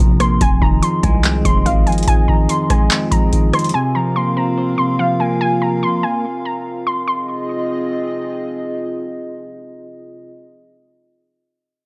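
A warbly, dusty pluck carries the melody up front in this hard-hitting, melancholic trap excerpt, its detuned, lo-fi tone softened by chorus, a low-pass filter and analog delay. The hip hop groove sits at 144 BPM in a half-time feel in F minor, moving from Fm7 to Bbsus2 and back. A clean, compressed electric guitar plays fingered accompaniment close in the mix, while a distorted, aggressive 808-style bass sits in the background only through the first 2.1 seconds. A booming analog drum machine, with a deep kick, metallic hats, handclaps and rim clicks, adds tape-warm 12-bit grit before dropping out at 3.7 seconds. A dark, moody analog pad holds sustained chords under a subtle chorus until 10.3 seconds, and the whole mix is dry on reverb but echo-heavy.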